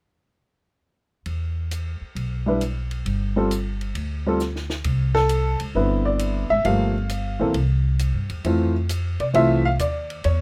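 Relaxed and sophisticated, this swinging jazz piano trio excerpt in C major moves at 134 BPM in 4/4. The growly, woody upright bass and a compact cocktail drum kit with dark cymbals, a high-tuned snare and a tight kick come in together at 1.3 seconds, with a drum fill at 4.4 seconds before the harmony opens onto Cmaj9, Gm9 and Fmaj7. An intimate, slightly detuned upright piano with audible action noise joins on melody at 2.5 seconds, sitting up front alongside the bass in a dry, close sound.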